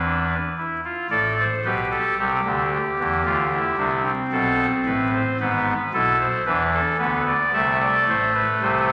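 A straight 4/4 pulse at a slow 56 BPM carries this serious, solemn baroque-style three-part fugue in A minor, tuned to A4 = 438 Hz and cut from a longer piece, played by a solo pipe organ on a soft, reedy oboe stop with baroque voicing and a crisp chiff, sitting up front across a range from G#1 to E5 as the harmony moves from Am through D5 and E7/G# back to Am at 7.5 seconds, all set in a lush scoring-stage reverb with a bed of vinyl crackle.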